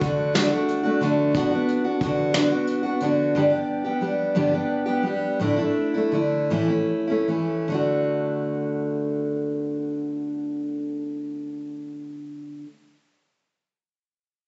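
Acoustic folk in a swaying 6/8, this peaceful fragment of a longer piece sets a full-bodied, fresh-stringed picked steel-string guitar up front over a vintage brush kit of hi-hat, punchy kick and snare that plays only until 3.2 seconds, with the music slowing from 3.3 to 7.7 seconds as the chords move through G, Asus4 and A back home to D, all heard through a phone's room-bound, top-shy capture with studio reverb.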